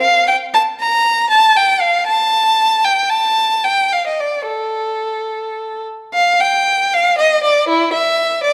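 Classical, baroque-style suite movement for unaccompanied violin in 6/8 at 70-80 BPM, radiant and serene, with one player's rich, up-front bowed tone ranging from E4 to Bb5, expressive vibrato and portamento shaping a rubato line that turns to a new section at 6.1 seconds, all carried by a moderate recital-hall reverb in this brief cut from a longer piece.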